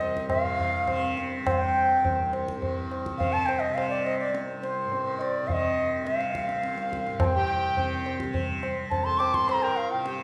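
A lush recital-hall reverb surrounds this short excerpt of meditative, longing Hindustani classical music in raga Kafi on C, moving at 104 BPM in a straight 5/4. A bright, airy bamboo bansuri carries the melody up front over a softly plucked, buzzing tanpura drone, while low-tuned, ringing tabla sits close and dry at the front of the sound. At 7.4 seconds a hand-pumped harmonium enters with a mellow, breathing, reedy second line.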